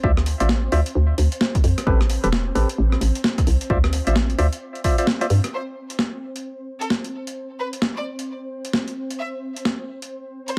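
A swung two-step UK garage groove at 131 BPM, built on a punchy electronic kick and a gritty, overdriven breakbeat kit of hi-hat, rim click and snare, drives this soulful, moody excerpt, with a hollow, bouncy FM bass and dark, chorused organ stabs with delay moving over Dm9 and Am9 beneath an ethereal, pumping pad. The kick drops out at 5.0 seconds, just before a band accent at 5.1 seconds, and the stabs and bass have stopped by 5.4 seconds. From 5.5 seconds a clear, vibrato-rich violin section with delay carries the melody over the pad and drums.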